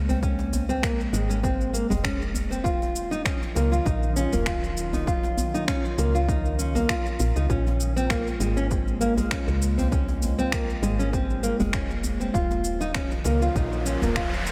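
Organic downtempo with a meditative, warm mood, where a fingerpicked nylon-string guitar up front traces arpeggios over a warbling, nostalgic lo-fi pad pumping with phaser and chorus, a woody, round FM bass, an overdriven punchy electronic kick with layered cabasa and finger snaps, and a deep djembe with metal rattles in the background, while a pure, ringing quartz singing bowl enters at 7.5 seconds and an electronic riser rises from 13.0 seconds, all set in a lush hall reverb with a big arena sound.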